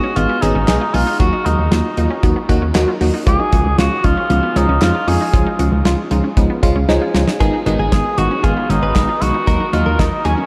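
A dreamy mix soaked in a wet cathedral reverb gives this melancholic, nocturnal synth-pop excerpt its hazy, distant glow. A dark cor anglais carries the melody with vibrato and a delay, singing in a classical style over a glassy FM electric piano whose bell-like attack is colored by chorus and phaser. Underneath, a round, punchy FM bass sits up front, while a damped 70s drum kit with a tight kick, a medium-tuned snare, hi-hat and handclaps keeps a straight groove. A lush, detuned unison pluck spins bright, warbling arpeggios through a delay in the background. The electric piano and drums both play fills just before 7.4 seconds, when a new section begins and a clean, direct-recorded electric guitar enters with a picked, compressed second line treated with analog chorus and delay.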